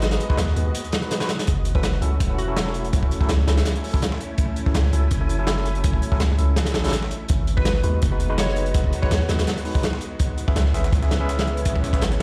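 A crunchy, saturated breakbeat kit with a tight kick drives this atmospheric, raw jungle and drum and bass passage, shadowed by a very quiet, dusty sampler-style kit, with a brief break at 0.7 s. A deep, mellow 808-style bass sits up front under silky string-machine chords in the background, while a barky, overdriven electric piano fires stabs through fast tremolo, 12-bit grit and dub echo. A glassy, warbling wavetable pluck adds melody at 1.8 s and 7.6 s, all in a large, reverberant room that suggests a big sound system.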